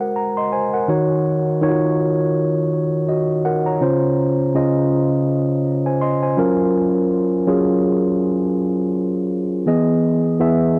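A lightly reverberant home cassette recording, with tape echo and cassette grain colouring a mellow tine electric piano that sits clean and up front. This moody, sensual R&B fragment, cut from a longer piece, has the piano playing alone in a swung 4/4 across a span from Db3 to C6. It moves from an opening Ab9 into Ebm7 at 0.9 seconds, then drifts through Dbmaj7 and Gbmaj7 before landing on Emaj7 at 9.7 seconds.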